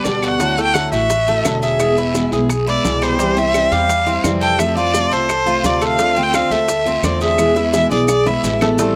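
A clear, focused erhu sings the melody up front with vibrato and portamento over a full-bodied picked steel-string guitar and a metallic, double-strung Cuban tres arpeggiating, each touched with slapback echo, as a dark, thumpy pizzicato upright bass, tight high-tuned bongos, raspy guiro, grainy maracas and woody claves fill out this sultry, danceable Cuban son and guajira fragment at 172 BPM, moving through Dadd9, E, C, F and Dm7 in a dry outdoor sound before a drum fill from 7.4 seconds.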